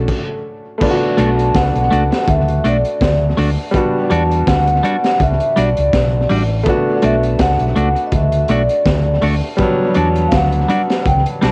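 A soft-mallet vibraphone carries the melody in this smooth, bittersweet lovers rock reggae excerpt, its mellow, ringing tone shimmering with slow motor vibrato and softened by cassette tape and tape echo. Set at 82 BPM in B minor with a gentle 16th-note swing, the piece opens on a brief stop before settling into a Bm7 to Em9 progression from 0.8 seconds. A clear concert grand piano plays accompaniment with intimate, natural character and audible action noise, while a hollow-body short-scale electric bass sits up front with a round, amped sound. The crunchy breakbeat kit, entering at 0.1 seconds, brings a tight kick, high-tuned snare and dark cymbals through saturated, gritty tape coloring with a rolled-off top. From 1.2 seconds a clean, twangy electric guitar adds compressed, picked stabs, all within a light, small-room ambience that gives the home cassette recording its cozy feel.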